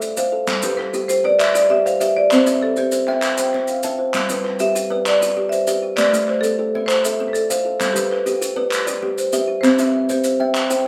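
An interlocking 12/8 cycle at 131 BPM in G mixolydian drives this rippling southern African traditional excerpt, where two ringing, woody kalimbas weave arpeggios from the start, one dark and smooth and the other vintage and band-limited, while grainy maracas sit close and dry, distant group handclaps enter at 0.5 seconds, and a bright, percussive rosewood marimba with plate reverb carries the melody over a G, C and Am progression, all heard from further back in a reverberant studio.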